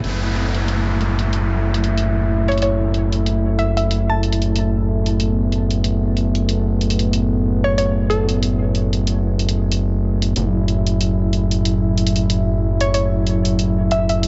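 Glitch hop with a swaggering, gritty mood, moving at 93 BPM in 4/4 with a swung sixteenth-note feel, cut from a longer piece and resting on a single F#m7 chord in F# minor. A gritty, saturated synth bass sits up front on F#1, its sawtooth and sync tones pushed through overdrive for an aggressive, resonant bite, while a vintage, detuned analog pad holds sustained chords underneath with a soft, warbling chorus. Bright, layered electronic hi-hats run throughout, overdriven and re-recorded in a small room, with low-pass filtering on the hats, snare and room. A downlifter sweeps through the opening until 5.2 seconds, and at 2.5 seconds a woody, wave-folded pluck enters with the melody, its percussive, decaying notes colored by chorus, cassette tape and dub echo. The whole piece sits in a digital ambience that keeps the top end dark.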